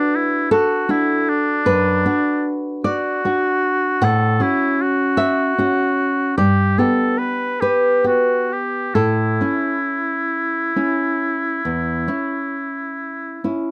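The oboe leads this tender, lyrical romantic duo, singing a classical-style melody between D4 and B4 with light vibrato, a soft attack and a smooth top. Beneath it, the nylon-string guitar supplies a dark, fingerpicked classical accompaniment that spans E2 to F#5, and finger squeak can be heard. Both instruments sit up front and play together for the full 13.7 seconds of this excerpt, which is cut from a longer piece. The pulse is slow and rubato, moving in 12/8 at roughly 43-52 BPM counted in dotted quarters, with the instruments tuned to A4 = 441 Hz. The harmony moves from Bm to F#m/A at 4.0 seconds, then to G and on to A. The sound is that of a dry, close 1970s-style studio recording with a touch of light reverb.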